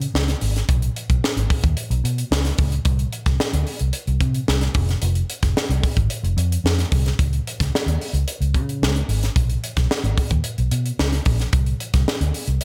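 Upbeat and glossy, this polished 1980s jazz-funk pop excerpt moves at 111 BPM in a straight 4/4 feel, centered in Db major. A vintage muted fingered electric bass carries the low end throughout, its tone dark, round and foam-muted, sitting up front with an amped punch as it ranges from F1 to Db3. Alongside it, a crisp fusion drum kit plays hi-hat, kick and snare for the full 12.6 seconds, with a high-tuned snare, a punchy kick and an airy studio-room quality. Gated reverb colors the drums, while the overall mix stays dry. The result is a polished groove cut from a longer piece.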